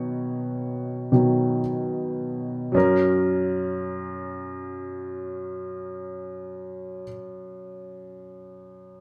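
A moderate studio reverb and a live-room feel surround this heartfelt pop fragment in F# major. An intimate, woody upright piano sits up front with audible action noise, accompanying in free time and slowing down over a Badd9 chord before settling on F# at 2.8 seconds.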